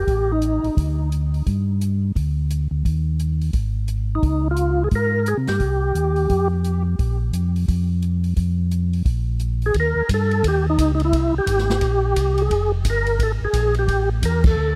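Swinging and bluesy, this fast soul jazz organ trio excerpt at 174 BPM pairs a round, dark tonewheel organ bass running throughout with a fat, lightly overdriven, percussive tonewheel organ melody with key click, slow rotary speaker, chorus vibrato and tape echo that appears in short bursts before settling in from 9.7 seconds, while an airy, polished big-band drum kit with a punchy kick swings alongside in a dry, close 1970s-style studio sound, all three up front and closing on a band accent at 14.4 seconds.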